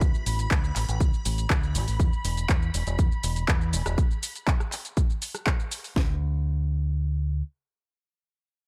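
A dry, echo-heavy mix frames this feel-good, joyful slice of filtered disco house, where a swirling, warbling vintage string machine holds bright sawtooth chords through ensemble chorus, phaser and sidechain pumping, moving from D5 to E5 before it stops at 4.0 s. Up front, a dark, round fingered electric bass pumps beneath a layered electronic house kit with a punchy kick and cracking snare, while a tape-warm analog drum machine adds handclaps, hi-hat, rim click and shaker, its hats and percussion pumping too. The kit stops at 6.1 s, and the bass plays alone until 7.4 s.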